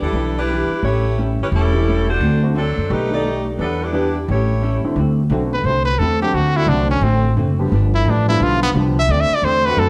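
Big band swing jazz at a brisk 174 BPM in 4/4, this brassy, swinging excerpt sits in D mixolydian with a strong swung eighth-note feel and moves through a chord progression of Em7, A7, D7, B7alt, and G7. A tight saxophone section carries the opening melody with vibrato, sounding clear yet roomy, before giving way at 5.5 seconds to a brilliant, punchy trumpet solo full of scooped notes and light vibrato that stands forceful and present at the front of the mix. Underneath, a woody, growly upright bass is plucked up front, while a dark, clean hollow-body electric guitar adds compressed, picked accompaniment throughout. A natural-sounding concert grand piano with deep bass fills in from the background between 1.7 and 9.0 seconds, and a vintage-toned trombone section adds brief sustained chords behind the solo. A moderate large-studio reverb gives the ensemble a spacious feel.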